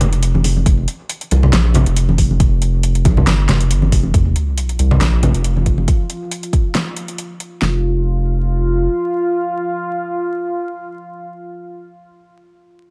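This dark, cavernous deep dubstep fragment opens on a thick, saturated sine sub bass sitting up front, alongside vinyl crackle, a layered electronic kit's metallic hats and fat snare, and low-tuned acoustic congas with soft hands, a thin bright skin and a dub echo. At 0.7 seconds a second tape-warm kit adds a deep kick and another fat snare, driving a half-time 4/4 groove with a light swing on the 16ths. At 4.1 seconds an impact lands as an electronic sub drop rumbles in the background. From 5.1 seconds a moody sawtooth pad enters with detuned unison voices, a sub octave, slow attack and long release, coloured by chorus, its own reverb, vintage 12-bit sampler grit and a filter sweep. The pad carries the close as the drums, congas and bass fall away, leaving a murky, shadowy atmosphere.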